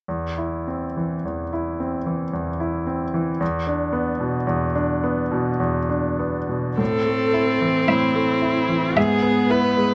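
Yearning and melancholic, this slow romantic movement for piano quartet unfolds in triple metre with a flexible, rubato feel, and it is cut from a longer piece. A clear, natural grand piano opens alone with an up-front accompaniment in its low and middle register. At 6.8 seconds the harmony settles onto a minor chord as a bowed viola and cello enter together: the viola's focused tone adds vibrato-touched accompaniment, while the cello carries a smooth, even second line up front. At 7.9 seconds a solo violin takes the melody on a single high note, its rich sound marked by a soft attack, vibrato and expressive portamento. Close, detailed microphones and light reverb keep each player intimate and distinct.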